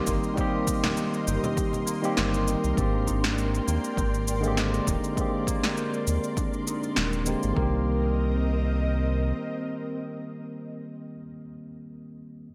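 Relaxed and warm, this sunset chillout excerpt moves at 100 BPM in 4/4 with a light sixteenth-note swing, set in C minor and drifting from Cm7 to Abmaj9#11 at 2.8 seconds before returning to Cm7 at 7.6 seconds. Up front, a barky tine electric piano plays the accompaniment, lightly overdriven through a combo amp with a low-pass filter and digital delay, and a filter sweep runs across it until 7.6 seconds. A round, deep analog bass sits beside it, dark and sustained with tube saturation. Behind them, an ethereal, airy pad holds mellow sustained chords with ensemble chorus and its own reverb, while a thumb-plucked concert harp rings softly in the background with arpeggios through a filter and delay. Punchy, layered electronic kick, shaker and snare drive the groove, the snare and shaker carrying gated reverb, with ringing congas adding a brief touch between 0.8 and 1.8 seconds. The drums stop around 7.6 seconds, and the whole sits in a plate-reverb ambience with a bright 1980s-style digital polish.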